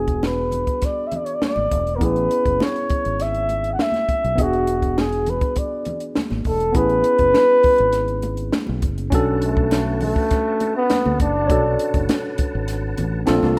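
At 101 BPM in a straight 4/4, this bittersweet, smooth slice of lush 1970s-style soul in B dorian sets a breathy, whispered flugelhorn melody up front over a worn, slightly out-of-tune tine electric piano with light overdrive, a round, punchy fingered bass, a dry cocktail drum kit with a high-tuned snare and punchy kick, bright background congas, and, from 9.1 seconds, a clear tonewheel organ with slow rotary speaker and key click, before a brief electric piano fill at 13.0 seconds closes this rough home demo mix.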